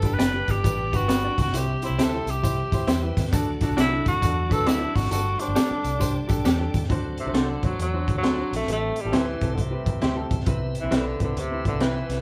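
A breathy, whispered tenor saxophone carries the melody up front, with vibrato and scooped notes, in this danceable, uptempo 1960s-style soul excerpt that swings at 134 BPM in D mixolydian. Beneath it a gritty, saturated breakbeat kit with a tight kick and high-tuned snare drives alongside a round, foam-muted electric bass, and a clear grand piano with audible action noise accompanies. Clean picked guitar stabs and a piping tonewheel organ turning through a slow rotary speaker sit in the background, a jingly tambourine plays until 6.8 s, and the band sounds live in one room with a moderate large studio reverb.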